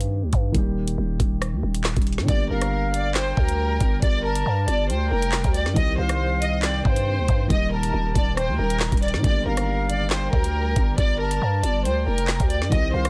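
A growling, buzzy 808-style bass sits up front beside a knocking, woody-snared drill kit with metallic hats and soft clipping on the snare, driving this dark, cold drill excerpt at 138 BPM in a half-time feel in G minor, with a mellow, boxy grand piano underneath from the start. After a short opening break, a distant, lush violin section with vibrato and delay takes the melody at 2.3 seconds, joined by an airy silver flute on a second line at 2.5 seconds and a very quiet, glassy FM pad holding sustained chords from 3.0 seconds. The chords move through Cm, Eb and Gm in a small room, finished with a dense, heavily limited modern master.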